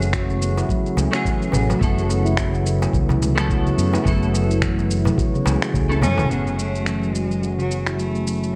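Bathed in a moderate plate reverb and a bright 1980s-style digital sheen, this short cut of earthy, mystical organic downtempo at 107 BPM in F# minor sets a ringing, stainless-steel handpan's meditative arpeggios over a growly, punchy fretless electric bass, a clean, picked electric guitar with chorus and delay, a warbling, lo-fi pad of nostalgic, detuned chords in the background, a gritty, thumpy sampled kick, finger snaps, shaker and toms, and a crisp metal-shell darbuka, before a drum fill at 5.9 seconds ushers in a smooth, bowed cello melody with rich vibrato from 6.0 seconds while a filter sweeps across the handpan from 6.3 seconds.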